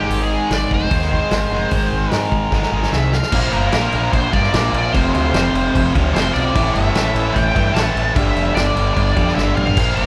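A bright, double-tracked overdriven electric guitar riff sits up front in this confident, driving classic rock excerpt. Above it, a dark octave-fuzz lead guitar carries the melody through wah and distortion, while a growling fingered bass with overdrive holds the low end. A vintage drum kit with dark cymbals and a tight kick plays fills at 2.5 and 9.4 seconds, and the band plays live together in a large studio room with moderate reverb.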